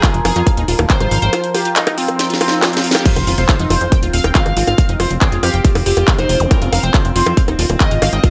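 Lightly reverberant and intense, this driving psychedelic trance passage at 139 BPM in F minor pairs a distorted, up-front electronic kick and a techno kit of cracking snare, metallic hats, bongos, handclaps and crash with a punchy, wave-folded analog bass, a lush detuned unison pluck riff through tape echo and sidechain pumping, a screaming, guitar-like overdriven synth lead with phaser, 12-bit sampler grit and digital delay, and a resonant overtone-sweeping drone holding chorused chords in the background, while the kick drops out from 1.3 seconds, a drum fill and band accent lead into the drop at 3.1 seconds, and very quiet swells, impacts and zaps sit beneath.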